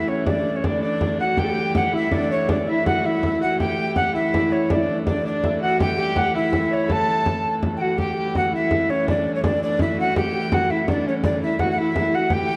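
A mellow, airy tenor recorder carries the melody up front in this rustic, ancient-feeling medieval dance in a straight 6/8, joined by a dark, biting viola da gamba and a bright, fingerpicked Celtic harp in the background that drops out at 8.6 seconds and returns at 12.3 seconds, over a clear, smooth hurdy-gurdy drone and a close, dry frame drum played with soft hands, all bathed in a recital hall's wet reverb as the pace gradually speeds up across this short cut from a longer piece.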